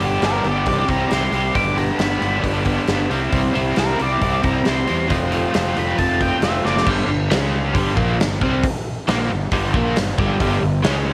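A driving, swaggering blues rock and southern rock power trio opens on a bright, double-tracked overdriven guitar riff with harmonic tremolo over a growly fuzz bass and a punchy, big-room acoustic drum kit at a straight 136 BPM in 4/4, while a dark octave-fuzz lead guitar with distortion and slapback echo sings from 0.3 to 6.9 seconds before a drum fill at 6.7 seconds tips this cut from a longer piece into a new section of G5 and C#5 power chords, all in light small-room reverb.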